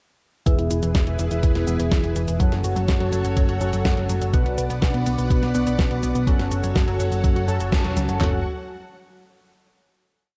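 A clean 12-bit drum machine sits up front in this short, complete italo disco piece: a thumpy four-on-the-floor kick, a fat snare, handclaps and a floor tom, all with a sampler-style, small-room character. A second, quieter drum machine adds a disco beat of closed hi-hat, cabasa and snare. At 124 BPM in straight 4/4 and F# minor, the mood is melodramatic and nostalgic, moving through E, F#m, Bm and back to F#m. A picked electric bass, amped and round, drives a sequenced sixteenth-note line, while a glossy chorused polysynth plays held chords with syncopated pushes under a filter sweep. Behind them, a lush string machine holds bright sustained chords with ensemble chorus, and a detuned analog pluck repeats a 16-step arpeggio sequence in the background, treated with chorus and tape echo. The band lands an accent at 7.7 seconds, and from 8.2 seconds a final chord closes the piece, all set in light digital ambience with a dark, warm production.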